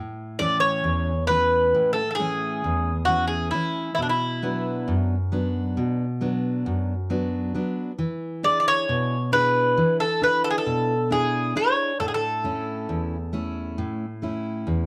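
Tender and warm, this short Greek folk excerpt moves in a straight 9/8, with a fingerpicked steel-string acoustic guitar laying down a full-bodied, jumbo-sized accompaniment through a gentle A, Bm, E7 and back to A progression. From 0.4 seconds the bouzouki carries the melody up front, its picked double strings giving a metallic shimmer with some octave-doubled courses. Both instruments sit close in a moderate studio reverb, and the recording is cut from a longer piece.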